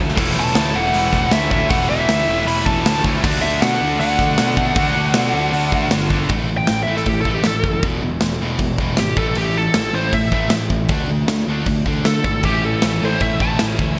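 A bluesy overdriven lead guitar carries this powerful, anthemic hard rock excerpt, its distorted, delay-touched melody running from 0.4 s and opening into a solo at 6.3 s in the upper register. Beneath it sits a big acoustic rock kit placed up front, with a punchy kick, medium-tuned snare, crash and bright hi-hat ringing in a big room. A fuzz-laden electric bass, picked and overdriven, gives the low end a punchy, warm growl. Three distorted rhythm guitars play riffs in the background: a high-gain part throughout, a tight part that drops out at 6.3 s, and a double-tracked tight part that plays the opening and returns briefly near the end. The chords move from A/E to D, then shift to A5, E5, A5 and D5 power chords under the solo before resolving on A. A lush hall reverb and bright 1980s-style digital production give the cut a glossy, arena-sized sheen.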